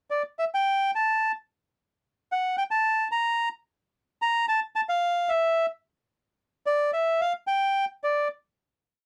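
A solo bandoneon carries this brief, sultry and dramatic tango, its reedy, airy tone sitting up front in a dry, close 1970s-style studio sound with light reverb as it shapes a rubato, motif-based melody in sentence-like phrases before settling on a final note at about 8 seconds.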